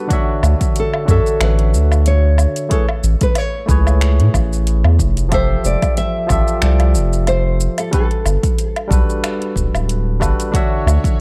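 A bright, barky tine electric piano with delay opens alongside a fleeting touch of very quiet, reedy chamber strings in this sunny, smooth sunset chillout piece in D major at 92 BPM with a light 16th-note swing, where a fingerpicked classical nylon-string guitar carries the melody through digital delay over an overdriven deep house kit of finger snaps, metallic hats, shaker and woodblock plus a punchy, overdriven electronic kick, with a round, deep analog bass sitting up front from 0.4 s as the harmony moves through Dmaj9, Amaj9, Fmaj9 and Gmaj9 before the bowed strings return at 10.5 s, in a dark, dry mix.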